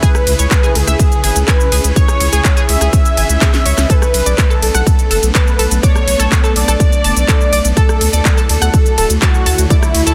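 A punchy, up-front electronic kick drives this expansive, dreamy progressive house excerpt in a straight 4/4, joined by a house kit with a cracking snare, crisp hats, handclaps, rim clicks, shaker and ride cymbal, and a drum fill between 3.4 and 3.9 seconds. A deep, saturated sub bass enters at 0.3 seconds, thick and up front beneath the groove and pumping with the sidechain. A velvety, detuned synth lead carries the melody with chorus, vibrato and dub echo, while a woody, dark violin section plays a second line in the background, pumping and echoing. A warbling vintage analog pluck spins bright arpeggios with chorus and dub echo, and a shimmering, ethereal pad holds granular sustained chords behind it all, bathed in its own reverb. The chords move from C#m7 to Bm7 to Dmaj7, and the dense, heavily limited master keeps the sound close and dry.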